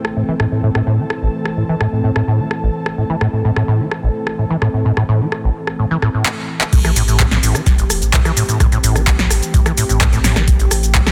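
A rubbery, resonant sawtooth acid bass sits up front in this raw, trippy acid house excerpt, entering at 0.2 seconds with a dark riff coloured by tube saturation, analog chorus and a filter sweep. An up-front analog drum machine runs throughout at 128 BPM in a straight 4/4, its punchy, softly clipped snare joined by metallic hats, handclaps, rim click, shaker and crash cymbal, all tape-warm and re-recorded in a small room. Beneath it, a smooth, detuned sawtooth pad holds sustained chords in A minor with chorus and sidechain pumping, while a faint, ethereal pad drifts in the background with tremolo and its own reverb until 6.3 seconds. After a short drum fill, the drop arrives at 6.7 seconds as the harmony moves from Am to Am7 and a deep electronic kick enters alongside a round, sine-based sub bass that pumps with the groove. The mix is dense and heavily limited, with light reverb and a modern, forceful finish.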